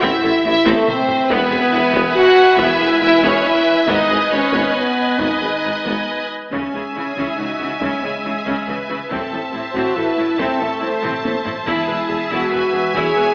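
A relentless 140 BPM pulse in 3/4 drives this dark, epic orchestral film-score passage in C# minor, where clear, intense violins carry the melody over a lush, smooth second violin line, focused violas, mellow up-front French horns holding sustained chords, background cellos and rich double basses, a faint tuba that drops out at 5.9 seconds, and hard-stick taiko drums with fills near 0.7 and 11.0 seconds, all set in a wet hall reverb with an AM-radio tone.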